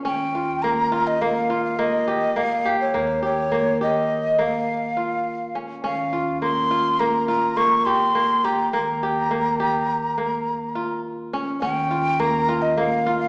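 A straight 5/4 pulse carries this restless, hopeful contemporary instrumental excerpt, where ringing, crisp fingerpicked kora arpeggios and a breathy, unsteady jazz flute melody with vibrato and a soft attack sit up front over a single Eb9 chord, while a woody, dark pizzicato upright bass holds a low note quietly beneath, all bathed in a wet recital-hall reverb with a small-speaker sound.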